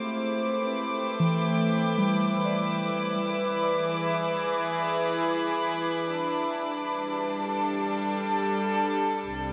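A studio string section holds sustained chords up front, its soft-attack, sul tasto tone pure and floating, bathed in shimmer reverb across the whole 9.5 seconds of this ambient fragment cut from a longer piece. Around it, muted felt-like synth keys play intimate, dark arpeggios with chorus and delay until 5.7 seconds, while a bright chamber violin section adds a high D6 texture with light vibrato and its own shimmer reverb. The harmony moves from Am7 to E at 3.0 seconds and Gsus2 at 6.1 seconds, at 77 BPM in a straight 4/4, tuned to A4 = 444 Hz. A rich, smooth double bass section enters only at 9.2 seconds, bowing a low C2 with vibrato in the final moments. The whole piece sits in a huge ambient reverb with an 8.1-second tail, giving a luminous, weightless mood.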